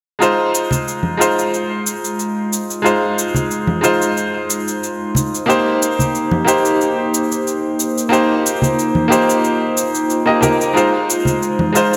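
A clear, intimate baby grand piano with audible action noise and a touch of delay provides accompaniment in this smooth, warm sunset chillout excerpt from 0.2 s, joined at 0.8 s by an airy, breathy pad with chorus and vintage 12-bit sampler grit, while a filter sweep moves across an analog synth pad, overdriven electronic cabasa adds a gritty edge, and ringing, low-tuned congas sit close, the whole mix bathed in lush hall reverb with bright 1980s-style digital production as the harmony shifts from Fm7 to Cm7 and back.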